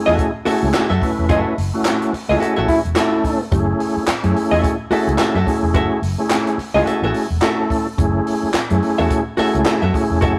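A swung sixteenth-note funk groove in 4/4 drives this short, sly excerpt cut from a longer piece, resting on a single F#m7 chord. A compact cocktail drum kit sounds dry and natural, with a high-tuned snare, tight kick, hi-hat and handclaps, while a vintage fingered electric bass adds a dark, foam-muted, round low end. Up front, a smooth tonewheel organ plays stabs with chorus vibrato, audible key click and a stopped rotary speaker, joined by a clean, compressed, hollow-body archtop guitar, picked in accompaniment. A group handclap sits distant in the background from 0.7 seconds, and a band accent runs from 1.3 to 3.5 seconds, during which a mellow trombone briefly sings a scooped, vibrato-laden jazz-style E4. The whole take has the rough, tube-saturated character of a rehearsal-room recording in a moderate stone room.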